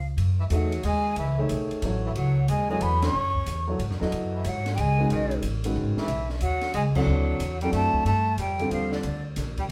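A brisk swung waltz at 183 BPM in 3/4 drives this short, cool and hypnotic modal jazz fragment in F# dorian, cut from a longer piece. A breathy, hollow silver flute carries the melody high above, its tongued notes shaded with vibrato and heard close up, while a clear tenor saxophone with a soft attack and its own vibrato sings a second line far below. Up front, a woody pizzicato upright bass on steel strings anchors the low end, and an open acoustic drum kit with dark cymbals, a high-tuned snare and a punchy kick sits further back in the mix. A warm, woody upright piano with long sustain fills in the harmony, moving from F#m9 through G#m and D7 before landing on Gm7 as a new section begins at 8.1 seconds. The whole band hits accents together at 3.0 and 6.9 seconds, all heard as one group playing live in a room with a wet studio reverb.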